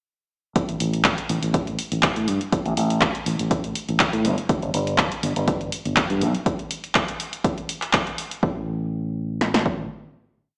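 Nostalgic and sensual, this short filtered disco house piece rides a swung groove built on a punchy analog drum machine, its four-on-the-floor kick and snare re-recorded in a small room and sitting up front alongside programmed closed and half-open hats and a clap backbeat, with sidechain pumping on the hats. A fingered electric bass, direct and amped with tube saturation, a low-pass filter and sidechain pumping, plays a funky syncopated line that stays up front. The hats and claps stop at 8.4 seconds as the final note begins, while kick, snare and bass carry on briefly, all heard through light reverb and a large studio reverb in a bare room with a small speaker sound.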